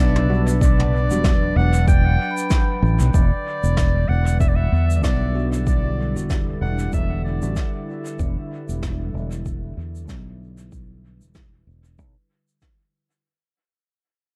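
A swung 95 BPM groove in 4/4 from a deep, layered electronic kick and a distant, roomy brush kit of shaker, high-tuned snare and toms carries this meditative, spacious ambient dub fragment in E minor, where a round, punchy, up-front fingered bass holds the low end under a filter sweep, a smooth, warbling analog pad sustains a chorused Em7, a metallic vibraphone ripples tape-echoed arpeggios until 3.9 s, bell-like electric piano stabs carry sampler grit and dub echo, and a bright, classical-style clarinet sings a dub-echoed solo melody until 7.8 s as a dark reverb-soaked fade-out begins at 3.1 s.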